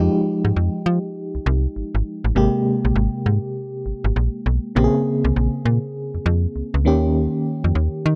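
A snappy, slap-like FM bass anchors this short R&B clip, its metallic, digital attack sitting up front and decaying as it moves between Ab1 and F3. Beside it, an FM electric piano with tremolo supplies the accompaniment in a mellow register from C3 to Ab4, its quick onset carrying a faint noise layer before each note fades. The groove is slick and bouncy at 100 BPM in 4/4, with a 62% swing on the sixteenths giving it a loose lilt. In F minor, the harmony moves from Fm9 to Abmaj9 at 2.4 seconds, then Bbm9 at 4.8 seconds and Eb7 at 6.9 seconds. Both parts play throughout the 8.2 seconds, cut from a longer piece, and the dry sound keeps them close and present.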